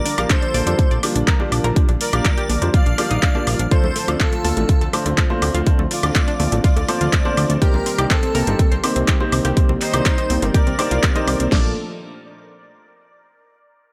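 Progressive house at 123 BPM in Bb major, expansive and hopeful, built on a drop where a punchy pop kit with fat snare and crash sits up front over a deep house kit of metallic hats, handclaps and woodblock, faint overdriven bongos and congas, and a thick, detuned analog bass pumping beneath a smooth, airy supersaw melody with dub echo, a dreamy vibrato-laden second lead, a very quiet chorused pad, a round filtered pluck playing arpeggios, and clear, worn baby grand piano stabs, all moving through Gm7/Bb, Dm7 and Cm7 before landing on Bbmaj7 at 11.5 seconds in a light digital reverb.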